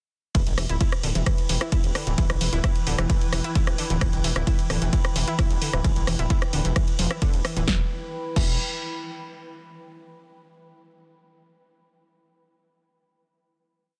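Driving peak-time techno with a dark, hypnotic mood, built on a punchy, up-front four-on-the-floor electronic kick and an analog drum machine supplying hats, rim clicks, ride, crash and a softly clipped backbeat snare, while a gritty, saturated sawtooth bass rolls beneath a round, detuned eight-step pluck riff soaked in chorus, overdrive, cassette tape grit and dub echo, all pumping against the kick as a swarming granular drone hovers in the background from 1.7 seconds and a warbling, lo-fi tape-like pad of slowly shifting chords drifts in at 1.0 seconds and holds the final E minor chord alone until 9.5 seconds in a dense, heavily limited modern master.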